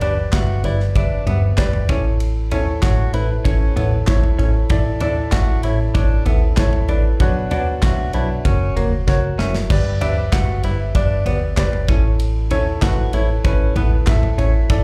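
A straight 4/4 groove at 96 BPM drives this earnest, dramatic piano-driven pop piece, where a modern acoustic drum kit with a tight kick, crash, ride, toms and handclaps sits up front beside a punchy, plucky analog bass, while a dark baby grand with audible action noise and slapback echo carries the accompaniment and a clean, direct-recorded electric guitar riff with subtle chorus rides over chords moving from G to A, Dsus2/A, Bmadd9 and F#, the whole performance heard as a live gig through a club PA, with a drum fill at 9.1 s before the progression returns at 9.7 s.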